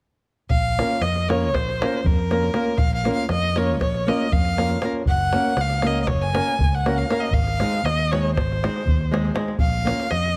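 A single bowed violin leads up front with a rich, focused, slightly boxy tone and expressive vibrato, carrying a bittersweet, virtuosic melody in the straight 9/8 pulse of a Balkan wedding band. Beneath it, fingerpicked flamenco-style acoustic guitar joins at 0.8 seconds, while a punchy, amped fingered electric bass with a warm edge and a tight, close davul drive the harmony from B-flat minor through G-flat and A-flat back home. The sound is close and detailed with a light reverb, in a brief cut from a longer piece.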